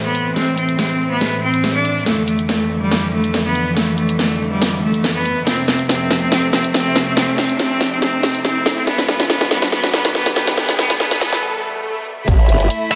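Heavy wobble dubstep at 141 BPM in a half-time 4/4 feel and A minor, this menacing, chaotic build-up is cut from a longer piece. A bright, intense solo cello carries the bowed melody with light vibrato and tape echo, over a distant, floating studio string section holding soft-attack sul tasto chords that pump with the sidechain. The chords move from Am through Dmadd9, F and Em. A dubstep drum kit with a huge, up-front snare, hi-hat and crash runs a fill through the build, while a very quiet electronic riser and swell creeps in from 4.9 seconds. After a short break at 11.4 seconds, a punchy layered kick and a detuned, formant-swept wobble bass with chorus and overdrive hit at 12.3 seconds on an A5 chord. A picked, overdriven electric guitar stab follows in the closing instant, all set in a lush hall reverb with a dense, heavily limited modern master.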